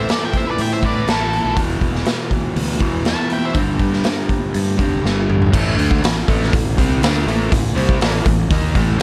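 Heavy and smoky, this blues rock and southern rock excerpt in A minor at 121 BPM opens with a dark, fuzzed octave lead guitar carrying the melody while a nasal, parked-wah second lead sits in the background, both dropping out at 3.6 s, as a bright, double-tracked semi-hollow guitar drives the riff over a growly fingered fuzz bass and a raw, gritty garage drum kit in a pumping stone room, whose fill at 5.0 s leads into a new section at 5.5 s.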